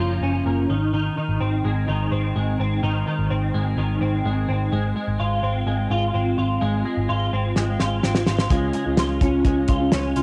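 A straight 4/4 pulse at 127 BPM drives this nostalgic, youthful slice of jangly indie pop, cut from a longer piece and recorded at home on cassette with light reverb and small room ambience. A bright, twangy twelve-string electric guitar plays up-front arpeggios through ensemble chorus and cassette tape over a dark, round, foam-muted picked bass, moving from Gbmaj7 through Ab and Fm/Ab to Db. A cloth-damped drum kit with a fat snare and rolled-off top enters with a fill at 7.6 seconds, and a full-bodied, fingerpicked steel-string acoustic guitar joins at 8.5 seconds.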